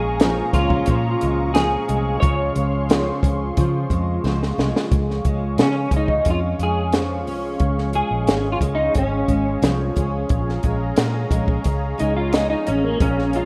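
A slightly broken-up electric guitar through a small old amp, compressed and up front with an ensemble chorus, carries the melody and then a clean solo from 4.9 s in this hazy, sunny indie bedroom-pop fragment at 89 BPM in Db major, over a full-bodied picked steel-string acoustic guitar with warbly pitch drift, a detuned sawtooth analog pad holding slow-attack chords, a round, foam-muted fingered bass, and a compact cocktail drum kit with a high-tuned snare and punchy kick that enters at 0.2 s and plays a fill at 4.2 s, the mix sitting in a moderate plate reverb with a rough home-demo feel.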